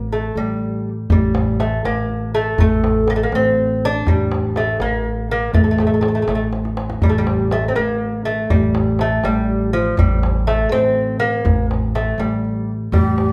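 Melancholic and hypnotic, this brief cut from a longer Persian modal piece in dastgah shur on A moves at 81 BPM in a straight 6/8, with woody pizzicato upright bass and a delicate, fingerpicked nylon-string lute up front from the opening, a tight, saturated tombak played with soft hands joining at 1.1 seconds and adding a fill just before the phrase repeats at 7.0 seconds, and a breathy, bright low ney, unsteady and touched with vibrato, slipping in at 12.9 seconds, all caught live in one room with a wet, large studio reverb.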